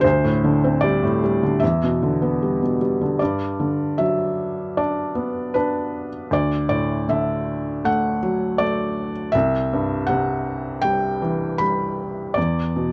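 Classical solo piano in a calm, lyrical mood, moving at 78 BPM in 4/4 with a rubato feel and settling into G major from 3.2 seconds. A felt-muted upright piano plays alone across the whole 12.9-second cut, ranging from C2 to B5 with a soft, mellow and intimate tone, the thin felt and audible action noise adding a warm character. Close, detailed microphones place it up front within a light reverb, as the harmony drifts from D7sus4 and Em7 through Gmaj7, D and Cmaj7 before arriving at an E7 near 12.4 seconds.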